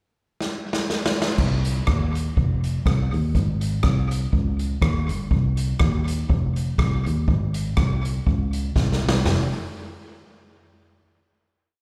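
Ska with an energetic, mischievous swing, played live through a club PA with little reverb. A street-band drum kit opens with a fill at 0.4 seconds, its dark cymbals, boomy kick and medium-tuned snare sitting up front with tape echo, while the side-stick backbeat drives the ska beat. A foam-muted, round fingered electric bass enters at 1.4 seconds with a dark walking line and slides, and a final drum fill leads into the last note at 9.3 seconds.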